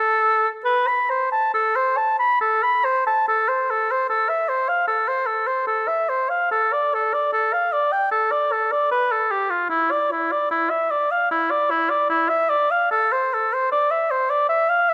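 Flowing and radiant, this baroque-style fantasia for solo oboe unfolds in A minor at around 75 BPM in 4/4, with a free, rubato feel and uneven beats. The warm oboe sits up front with vibrato and a classical manner, ranging from E4 to B5 and shifting into a new section at 3.3 seconds. A moderate recital-hall reverb surrounds the playing in this 14.9-second passage cut from a longer piece.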